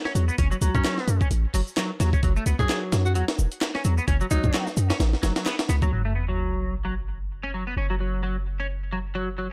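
A bright, pop-style alto saxophone with light vibrato and scooped notes carries the melody through the first half of this playful, energetic breakbeat cut, over a gritty, pitched-up sampler drum kit with a thumpy kick and high-tuned snare, plus overdriven electronic shaker and handclaps. Beneath it, a deep, boomy 808-style bass and a twangy, clean electric guitar riff with chorus and delay run throughout, and a band accent at 5.5 seconds gives way to a passage where the drums stop and an electronic sub drop rumbles in the background from 5.9 seconds. The production is dark and warm, with light reverb and a swung sixteenth-note feel.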